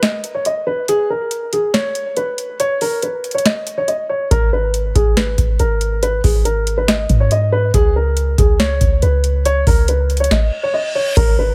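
Menacing and melancholic, this hip hop trap cut at 140 BPM in a half-time feel pairs a dark, boxy concert grand piano melody, mellowed by a low-pass filter and delay with its action noise audible, with a booming, overdriven analog drum machine of deep kick, crisp snare and metallic hats, while a clean, sine-like 808-style bass with fast attack enters at 4.3 seconds under G#madd9 and Bsus2/C# chords, and after a stop at 10.3 seconds an electronic reverse cymbal leads into a closing impact at 11.2 seconds, all in a dry mix.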